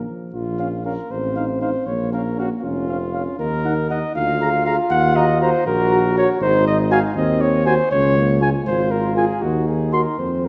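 Grave and solemn, this short passage from a longer piece is a classical brass quintet moving in a flexible, rubato 6/8. The cornet carries the melody high in its range with a light vibrato and a smooth top, while the flugelhorn sits close and up front with a second line that has a punchy, mellow edge. Beneath them the French horn holds a very quiet, warm, smooth-topped accompaniment, joined from 0.1 seconds by the trombone's mellow inner voice. The tuba anchors the bass up front yet sounds distant and roomy, its punchy low notes blooming into the concert hall's wet reverb. The harmony settles in B-flat minor and moves through E-flat minor toward a major turn before closing on a rootless diminished chord at 9.4 seconds.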